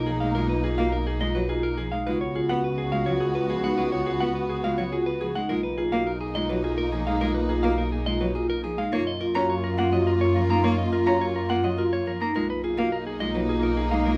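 A clean, picked electric guitar carries the melody from the first moment. Alongside it, a mellow French horn with light vibrato sits in the background on a second line, a lush bowed string section holds smooth sustained chords, and a bowed double bass section sits up front on the bass. This is a propulsive, bright passage of minimalist classical pattern music in 3/4 at 105 BPM, set in B lydian, with a straight feel. At 0.1 s a vibraphone played with soft mallets enters with metallic, ringing arpeggios and a medium motor vibrato, the most prominent part in the blend. A focused, distant solo cello enters at the same moment with bowed accompaniment. The harmony circles back to Bmaj7#11 between C#7sus4 and F#maj7 under a light reverb, and the excerpt is cut from a longer piece at 14.2 s.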